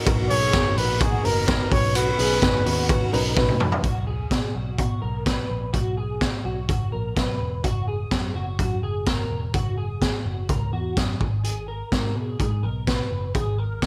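Jangly indie pop at 126 BPM in B major, breezy and youthful, cut from a longer piece. A woody, slightly detuned upright piano and a very quiet warbling analog pad open under a breathy, whispered trumpet melody that stops at 3.4 seconds, while a twangy, slightly broken-up guitar with ensemble chorus plays arpeggios over a round, foam-muted picked bass. Up front, a gritty, saturated garage kit with a punchy kick, high-tuned snare and gated reverb plays a fill from 3.4 to 3.8 seconds, leading into a section where guitar, bass and drums carry on through B5, F# and G#m chords in a small room.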